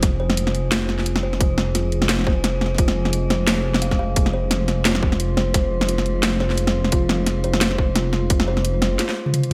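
Bathed in light reverb with a bright, 1980s-style digital sheen, this spacious, cinematic half-time drum and bass excerpt sets a tight, overdriven electronic kick and an up-front, layered kit with cracking snare, bright hats and toms over a deep, rumbling detuned saw bass that drops out at 9.0 s. A woody, mellow kalimba plays delayed arpeggios from 0.2 s, and an eerie, warbling metallic drone hovers in the background throughout as a drum fill arrives at 9.0 s.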